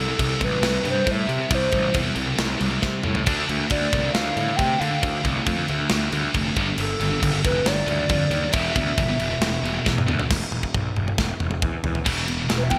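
Epic, relentless heavy metal in a half-time feel opens this short cut, where a reedy, woody FM lead with chorus and delay carries the melody over a scooped, double-tracked high-gain guitar riff and a growly fuzz bass, while a tight drum kit with gated reverb and bright cymbals enters at 0.2 seconds and drives through fills on either side of the point where the lead drops out at 9.8 seconds, all framed in a bright 1980s-style digital sound.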